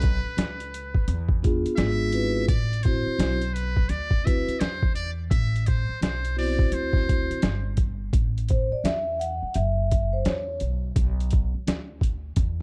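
This mellow, cool jazz-hop excerpt opens with a muted trumpet, upright bass and boom bap drums together at an unhurried 85 BPM in 4/4, with swung sixteenths and a dorian colour centred on A. The metal-muted trumpet carries the melody with a buzzy, thin, brilliant tone, light vibrato and scooped notes, sitting distant and roomy behind a slapback echo until it stops at 7.8 seconds. Underneath, the pizzicato upright bass is woody and growly, while the sampler-style kit sounds gritty, compressed and pitched down, with a thumpy kick, a medium-tuned snare and hi-hat placed up front. A soft-mallet vibraphone enters at 1.4 seconds with a ringing, metallic shimmer, played with the motor off, and takes the solo spot from 8.1 seconds as the harmony shifts from chords like Am69 toward F#7sus4 and Bm. The whole production feels dark and warm inside a small room.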